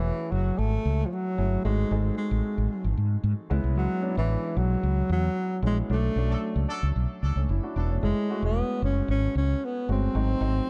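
Bittersweet and slick, this pop excerpt moves with a straight pulse in a small room with a dark production. A breathy alto saxophone carries the melody up front, close-miked and intimate, with vibrato, subtone, soft attacks and scooped notes that give it a whispered, jazz-style voice. Underneath, a natural-sounding grand piano supplies accompaniment touched by a subtle chorus, while a round, direct fretless electric bass sits prominently with an amped, mellow tone. During a band accent between 5.9 and 8.0 seconds, a distant, roomy horn section enters briefly at 6.3 seconds, its light vibrato trailed by digital delay. The harmony moves through rich minor-ninth and altered dominant chords, giving the passage a polished, wistful glow.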